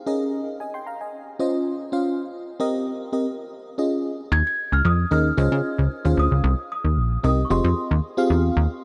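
A lush, dark FM electric piano with a soft pad layer and chorus opens this late-night, slick early-eighties boogie funk fragment over sus and major-ninth chords, joined at 4.3 s by a punchy, plucky analog bass up front and a delicate, bell-like celesta melody trailing analog delay, all bathed in a huge, dreamy ambient reverb.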